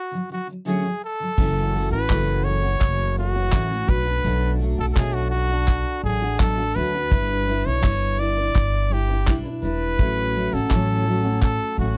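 A bright trumpet with pop-style vibrato sits up front carrying the melody in this heartfelt, sunny acoustic pop excerpt at 84 BPM, joined almost at once by a double-tracked, full-bodied steel-string acoustic guitar whose picked accompaniment shows audible finger squeak. At 1.4 seconds a woody, thumpy pizzicato upright bass and an unplugged drum kit with punchy kick, dark cymbals, handclaps and bundle sticks come in, as the harmony moves from Dmaj7 through F#m7, Bm7 and G6 to A6. The sound is dry and close, in the manner of a 1970s studio recording.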